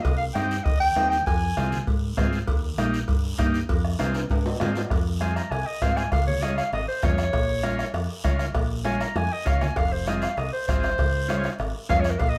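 Danceable and fiery, this cumbia excerpt sets a clear, up-front jazz-style clarinet with light vibrato and scooped notes against a dark, round, punchy fingered electric bass, a soft-beater bombo, ringing congas in the background, ringing metal-shell cowbell and timbales, a raspy close guiro and a buzzy vintage combo organ, all in a band playing live in one room, with drum fills at 4.0 and 9.2 seconds and the clarinet returning at 5.2 seconds for its solo.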